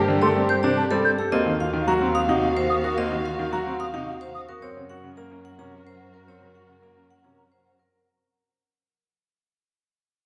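In a straight three-four pulse, this hypnotic, bright minimalist classical fragment sets a metallic, ringing hard-mallet vibraphone melody, close and dry, over a clear, intimate baby grand tracing arpeggios and a brilliant second baby grand with short sustain and audible action noise in accompaniment, while a mellow, hollow concert flute adds airy high arpeggios, a crisp-attacked alto flute with rolled-off highs sounds a second line in the background, a distant, dark chamber string section holds bowed chords, and a single close cello with portamento carries the warm bass, the whole passage set in a wet concert hall reverb and fading out across its 7.9 seconds.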